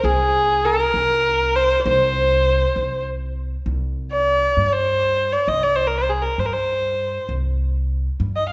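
A bowed kamancheh, a plectrum-plucked oud and a pizzicato upright bass open together in this hypnotic, soulful Persian modal excerpt, set in C dastgah shur in a straight 6/8 at 66 BPM (dotted quarters). The single kamancheh sings the melody up front with a rich, smooth tone, vibrato and portamento, while the fretless, double-strung oud adds a woody second line in the background until 3.0 s. The dark, thumpy gut-string bass holds the low end up front through 8.5 s, the music moves into a new section at 3.7 s, and a moderate concert hall reverb surrounds the ensemble.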